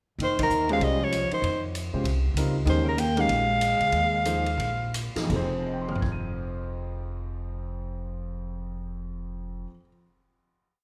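Modal jazz in F minor, this brief, complete piece carries a spiritual, intense mood at a swinging tempo of 166-195 BPM that slows from 2.7 to 5.3 seconds before settling on a final F minor chord. A warm soprano saxophone leads up front with a motif-based melody of call phrases, its light vibrato and subtone giving a smooth top, while a mellow alto saxophone sits beneath with scooped notes and vibrato, shaping a harmony line mostly in sixths. Both horns stop near 5 seconds, while the woody pizzicato upright bass, played up front in a two-feel, and the clear concert grand piano, which enters at 0.7 seconds with syncopated comping in quartal voicings, deep bass and long sustain, carry on into the final chord. The distant, roomy drum kit lays down a stick ride pattern with dark cymbals, a punchy kick and a rolled-off top before dropping out at 6.1 seconds. A band accent lands at 0.4 seconds, and moderate recital hall reverb lends the whole ensemble a spacious, concert-hall glow.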